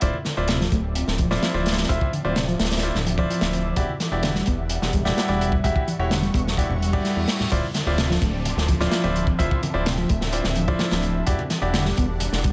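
Gritty and swaggering, this breakbeat excerpt rides a crunchy, saturated drum kit and a fat, detuned analog bass, with bright baby grand piano stabs, a reedy, worn electric piano riff under overdrive, fast tremolo and tape echo, a lush unison pad pumping through chorus and phaser in the background, very quiet congas, and a faint reverse cymbal and downlifter arriving at 6.8 seconds ahead of the drop at 7.5 seconds.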